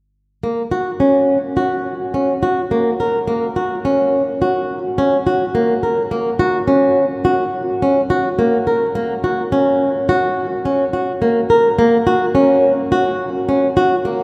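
The recording sits in a vast, echoing space, where a wet cathedral reverb lets every note ring on long after it is played. Within it, a solo flamenco guitar sounds acoustic and up front, its fingerpicked tone warm and close despite the huge room around it. This contemporary instrumental piece moves in an unusual five-beat metre with a straight feel, and the mood is pensive and hypnotic. The guitar plays from 0.4 to 14.2 seconds in a compact middle register, with the music turning to a new section at 6.1 seconds. Cut from a longer piece, this short passage feels like a reflective moment suspended in a cavernous hall.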